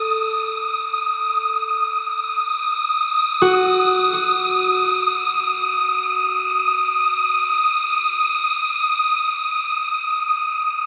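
Serene and weightless, this ambient excerpt floats in free time, cut from a longer piece and tuned to A4 = 442 Hz. A concert harp, fingerpicked and ringing up front with tape echo, plays arpeggios from the start until 6.5 seconds, while a breathy, wind-like tuned noise texture, sine-based and dark with slow attack and long release, sustains through 10.9 seconds with its own built-in reverb. The whole is bathed in a cathedral reverb lasting 5.2 seconds.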